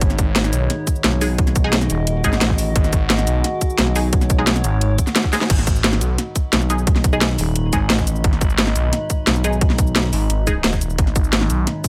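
Set in a digital ambience, this tense, aggressive stretch of dark technical drum and bass in G# minor drives at 175 BPM, with an overdriven, tight electronic kick and an up-front kit of cracking snare, bright hi-hats, cabasa and crash cymbal. A swirling, phased detuned saw bass and a growling FM bass share the low end, while a muted, deep dub chord stab with phaser and delay enters at 1.2 seconds. Behind them, an eerie, metallic drone holds sustained chords while a warbling, nostalgic lo-fi pad adds texture, both with chorus, reverb and sidechain pumping, until the pad drops away at 5.5 seconds after a band accent and drum fill.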